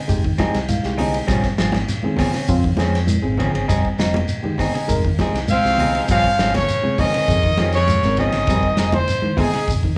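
Intense and hypnotic, this afrobeat excerpt rides a round, direct fingered electric bass, a soul drum kit with dark cymbals and a tight kick, ringing congas and a grainy shekere, while a twangy clean electric guitar picks arpeggios in the background, a hollow-body semi-hollow electric guitar adds stabs, and a worn, slightly out-of-tune reed electric piano with light overdrive plays accompaniment and a fill near the start, before a punchy trumpet takes the melody up front at 5.5 seconds beside a gritty baritone saxophone and a brief raspy tenor saxophone on the second line, the band playing live together in one room with moderate studio reverb.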